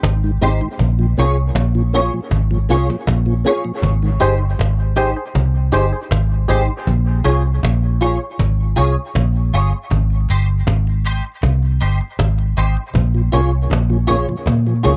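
Hazy and laid-back, this dry, close, 1970s-style dub reggae excerpt at 79 BPM sways between Abmaj7 and Bbm7 over a round, foam-muted electric bass placed up front and a snappy cajon with snares, while a twangy, scooped clean electric guitar with ensemble chorus and dub echo plays throughout, a mellow tonewheel organ with key click and slow rotary speaker drifts in and out, a hollow, decaying percussive organ stab with dub echo appears from 4.2 to 6.6 seconds, and bright, thin-skinned, low-tuned congas return very quietly at 9.9 seconds.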